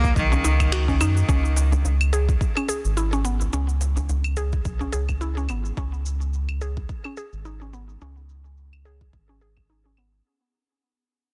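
A lightly swung sixteenth-note groove in 4/4 drives this earthy, organic downtempo fragment, cut from a longer piece. An overdriven electronic kick with a soft thump sits under gritty, filtered electronic cabasa, finger snaps and claves, while a deep, close and dry djembe struck with hard hands plays in the background until 5.6 seconds. Up front, a round analog bass, dark and sustained with a wave-folded edge and tube saturation, pumps against the kick. A woody, mallet-like synth pluck with a noise layer spins arpeggios of short, percussive notes through chorus and delay. A bright, biting cello played by a single player, with light vibrato and an airy bow, states a brief melody only until 1.0 seconds, and from 1.3 seconds the whole track fades out in a dense, heavily limited mix with little reverb.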